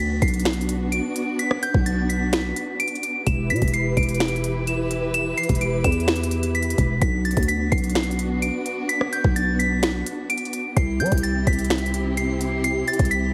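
Melancholic and menacing, this half-time trap excerpt at 128 BPM in B phrygian pairs a soft, pure FM synth bell melody, high in its range and shimmering with chorus, phaser and delay, against lush, bowed symphonic strings holding sustained chords that move from Bm through Em, back to Bm and on to C. Underneath, a growling, buzzy 808-style bass and an up-front trap kit with knocking kick, sharp snare, crisp hats, finger snaps and rim clicks drive the groove, the drums entering at 0.2 seconds. The whole mix sits in a moderate recital-hall reverb with a heavily compressed, radio-like sound.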